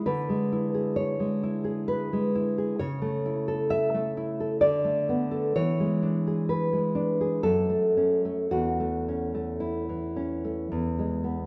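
Romantic solo classical guitar in A major and 3/4, a nostalgic, sunny excerpt at a rubato 52-69 BPM, where a dark, thumb-plucked nylon-string guitar with fresh strings sits up front across its E2 to E5 range, moving from E7/D through A/C#, Bm7/D, E7 and F#m to A/E before settling on E at 10.7 s, all carried by a moderate recital-hall reverb of a church or concert hall.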